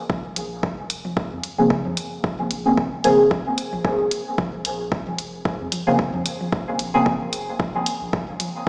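Heard through a small-speaker sheen in a bare stone room washed with huge ambient reverb, this hazy, hypnotic dub techno fragment in Bb minor moves at 112 BPM with a light swing, as a tape-warm, up-front kick and layered hi-hat ride over a soft, round sub bass that pumps with sidechain, analog toms and congas carry dub echo, and a dark, detuned chord stab on Bbm9, colored by chorus, phaser and echo, sounds from 1.6 s until 7.1 s.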